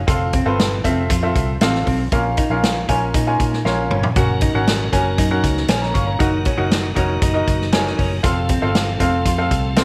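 Uptempo 1960s-style soul with an uplifting, warm mood, this short excerpt opens on a brilliant, woody upright piano up front with audible action noise, a round, punchy muted electric bass, and a dark, clean hollow-body jazz guitar playing a compressed, picked riff. A swinging big-band drum kit with a boomy kick and medium-tuned snare drives the groove from the start and plays a fill at 3.6 seconds, just before a piping, scooped tonewheel organ enters at 4.2 seconds with sustained chords through a fast rotary speaker, tucked in the background. The sound sits in moderate plate reverb and a small room ambience.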